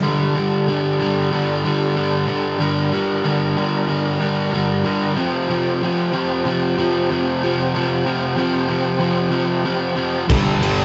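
A crunchy, overdriven, double-tracked electric guitar sits up front from the start, picking a heavy riff in a hard rock passage cut from a longer piece, with a straight, aggressive 4/4 feel. Beneath it, a thick, gritty tonewheel organ holds sustained chords through a slow rotary speaker and chorus vibrato, moving from G minor to F5. At 10.3 s, as the harmony lands on G5, the band crashes in: a second picked guitar, double-tracked and searingly distorted, plays a riff of its own, and a fuzz-laden electric bass growls on a low G in the background. A big acoustic drum kit arrives at the same moment with a punchy kick and a shimmering crash cymbal. The sound is that of a rough rehearsal-room take in a tight, wet booth, saturated and dark at the top, which makes the music feel heavy and raw.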